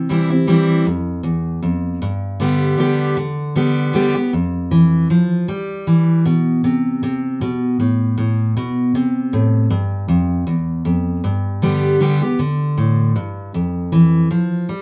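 A lively room sound with a wet studio reverb surrounds a single picked steel-string acoustic guitar, placed up front with a full-bodied jumbo tone and audible finger squeak. This joyful, rustic bluegrass fragment moves in a swung 3/4 lilt, the guitar playing alone across the full 14.8 seconds. Its phrases pass through C, G and Asus2 with open breaks between chords, and the same section repeats from 7.8 seconds.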